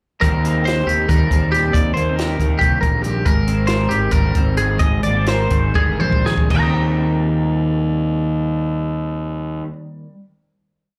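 The twelve-string electric guitar carries the arpeggios in this short, bright and playful math rock and midwest emo piece, its clean, twangy, compressed lines set up front as a picked ostinato with plate reverb and slapback echo. In 7/8 with a straight feel in Eb major, the tempo sits around 231-278 BPM counted in eighths, moving from Eb6 to Abmaj7 and back to Eb6. Beneath it, an electric guitar through a small old amp plays dark, slightly broken-up syncopated accompaniment, colored by analog chorus and its own slapback echo. The fuzz fingered electric bass growls up front with overdrive, punchy and locked to the kick drum of a compact cocktail kit whose dry, natural sound pairs dark cymbals with a high-tuned snare. The music slows from 3.3 seconds, a drum fill arrives at 5.7 seconds, and the drums stop at 6.6 seconds as the closing Eb6 chord rings out through the light club reverb of a live gig heard over the venue's PA.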